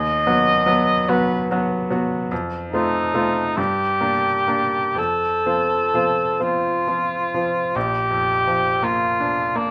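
A cor anglais carries the melody with a soft attack, light vibrato and a roomy tone in this melancholic, elegiac romantic classical excerpt, set in 6/8 at a slow, rubato 41-56 BPM in dotted quarters. A brilliant, polished grand piano accompanies from the low register with a short sustain, as the harmony moves through B/D#, F7, Gm and F before settling on Bb major at 7.8 s. Light reverb surrounds the duo, which is tuned to A4 = 436 Hz.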